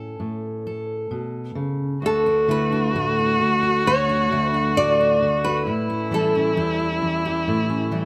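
A bright, classical nylon-string guitar carries the melody from 2.1 seconds in this heartfelt, hopeful acoustic folk-pop ballad excerpt, above a full-bodied fingerpicked steel-string dreadnought with audible finger squeak that opens alone, a dark, expressive bowed cello with vibrato and portamento as an up-front second line, and a very quiet felt-muted upright piano adding mellow arpeggios, set in light reverb as the harmony moves from A to Dmaj7 and A7.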